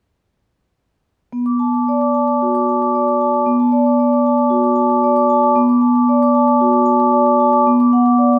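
Flowing and reflective, this brief fragment of a contemporary classical piece features a solo vibraphone played with soft mallets and the motor off, sounding from 1.3 to 8.4 seconds in a loose, rubato feel. Its mellow, ringing tone sits up front and full, captured by close, detailed microphones within a moderate recital hall reverb. The harmony rests on Bm7 before shifting to D/B near the close.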